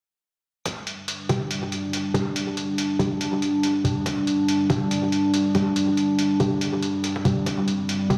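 Overdriven, muffled hi-hat and a thumpy, pitched-down kick drum open this brooding, heavy deep dubstep excerpt at 141 BPM in a swung half-time feel, joined at 1.2 seconds by a detuned, up-front analog pad with chorus and phaser sustaining a G5 chord, and from 1.3 seconds a muted sawtooth chord stab with cassette-tape grit and dub echo plucks through a huge stone-room reverb that makes the whole cut sound as if played on a big sound system in a bare space.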